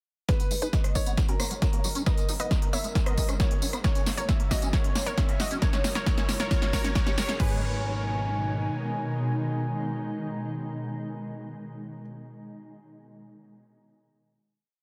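An uplifting trance piece, bittersweet and driving, opens at 0.3 seconds with a punchy, overdriven four-on-the-floor kick up front, crisp programmed hats, snare backbeat, tambourine and crash from a layered dance kit, and a very quiet squelchy acid bass arpeggio drifting against the bar. A mellow off-beat analog bass joins at 0.5 seconds, alongside a bright, detuned unison pluck riff in thirds and sixths with dub echo and sidechain pumping. A velvety synth lead with vibrato and tape echo plays a repeating second line, doubled by a clear, intimate baby grand piano with audible action noise, while a shimmering, ethereal pad with granular, octave-up shimmer enters at 1.1 seconds and a faint riser joins the build, which carries filter sweeps on the pluck and acid bass and a drum fill. At 7.4 seconds the drums drop away and the pad, pluck, lead and piano hold a final G# minor chord in a dense, heavily limited mix with light digital ambience.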